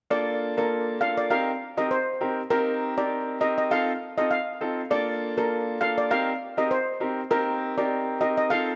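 Bathed in a lush hall reverb, this sunny, summery dancehall passage at 100 BPM, cut from a longer piece and moving with a lightly swung 16th feel, sets a shimmering, metallic double-seconds steel pan melody, struck with medium rubber sticks, placed up front and trailed by tape echo, over a clear, intimate baby grand piano accompaniment with audible action noise and long natural sustain, both moving through Bbmaj7, Cm7 and F7 from 0.1 s to about 8.7 s.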